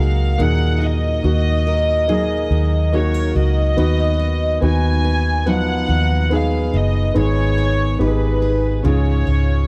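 A straight 4/4 pulse at 71 BPM sets an unhurried pace for this melancholic, longing pop passage in Eb minor, cut from a longer piece and lasting about 9.7 seconds. A dark, round electric bass, foam-muted and punchy, sits up front in the low register, while a baby grand piano supplies intimate accompaniment with its action noise plainly audible. Behind them, a picked steel-string acoustic guitar spins arpeggios in the background. A studio violin section carries the melody with a reedy, gut-string tone, light vibrato and a smooth top in a period style. The harmony moves from Ebm through B/D# and Abm to Db, and the dry, close recording has the feel of a 1970s studio with little reverb.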